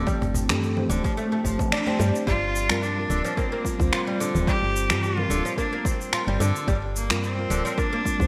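This organic downtempo excerpt opens on muted, felt-like synth keys with chorus, delay and sidechain pumping, alongside a plectrum-plucked oud playing delayed arpeggios, a woody, round FM bass, a very quiet ethereal pad holding sustained chords and a barely audible bronze singing bowl. Set at 109 BPM in 4/4 with a light swing on the sixteenths, the meditative, warm groove rests on an overdriven electronic kick and a layered kit of electronic cabasa, finger snaps and congas treated with gated reverb, while a snappy cajon sits in the background until 2.0 seconds. The harmony moves from F to C9sus4 as the second section arrives at 2.3 seconds, when the pad and singing bowl drop away and a biting, up-front cello takes the melody with vibrato and digital delay. The oud ends at 8.0 seconds as keys, bass, drums and cello carry on. A lush hall reverb and small room ambience frame a bright, 1980s-style digital production.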